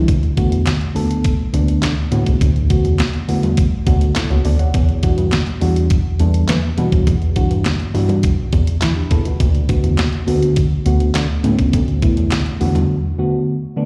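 Early-eighties boogie funk at 103 BPM with a late-night feel, built on a glossy, saturated pulse-wave synth bass and a thumpy, fat-snared detuned 8-bit drum machine with handclaps and hi-hat, while a soft, round FM electric piano with chorus, phaser and slapback echo moves through D6 and Em9 and adds a fill at 8.5 seconds, high-tuned congas sit in the background, and the groove drops out at 12.9 seconds for a brief electric piano break, all heard as a live gig through the venue's PA in a recital hall.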